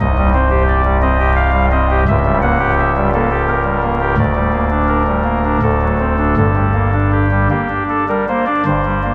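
A chamber organ's soft reed voice opens the recording alone, an oboe stop with a gentle chiff at the start of each note, placed up front with a compact chamber voicing. This is a grave, solemn classical chorale in triple metre, played with an elastic rubato that lets the phrases breathe. The harmony moves from a C5 sonority through a C#dim7 chord at 2.1 seconds to Gm/D, then settles on D7 before resolving to G minor at 6.4 seconds. The single organ part spans a deep bass down to C1 up to F#5, carrying the whole texture by itself. A long, wet church reverb surrounds the sound, and a vinyl crackle runs underneath, giving the brief 9.1-second passage, cut from a longer piece, a worn, archival feel.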